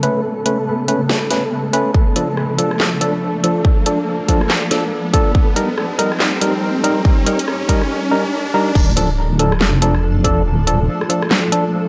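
A dry, gritty hardware sound with light digital ambience frames this heavy, meditative slice of deep dubstep, cut from a longer piece and moving with a swung half-time feel. A cloudy, blurred granular pad holds sustained chords under its own reverb while a faint, flickering grainy texture glimmers in the background, and a hollow, organ-like stab with chorus and dub echo sits up front; both the pad and the stab pass through filter sweeps during the build-up. The drum kit of huge snare, crash cymbal, handclaps, hi-hat and rim click is layered and high-passed, with a punchy electronic kick entering at 1.9 seconds as an electronic riser climbs toward the drop. At 8.8 seconds the drop lands and a deep, dark wobble bass, chorused and saturated, rumbles up front until 10.9 seconds. The harmony settles on a minor chord at the drop, giving the moment a brooding weight.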